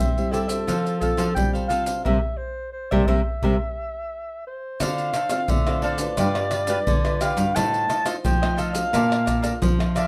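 A dark, jazz-inflected clarinet opens this lively samba and choro excerpt at 87 BPM in F major, played up front with vibrato and scooped notes, while nylon-string guitars and a percussion section of maracas, surdo, pandeiro and tamborim start together beneath it. One guitar carries the bass line in a full-bodied, deep classical tone, and the other fingerpicks the accompaniment in the background, with finger squeak audible on both. At 0.3 seconds a crisp, picked cavaquinho joins, adding a warm upper layer of accompaniment. The percussion sits prominently, compressed and saturated, with a deep surdo and hard hand strikes, and the band hits an accent from 2.1 to 4.8 seconds over a C7 chord. The second section moves through Dm7, G7, F7/A and Bbmaj7, all wrapped in a moderate studio reverb that gives the clarinet a roomy sheen.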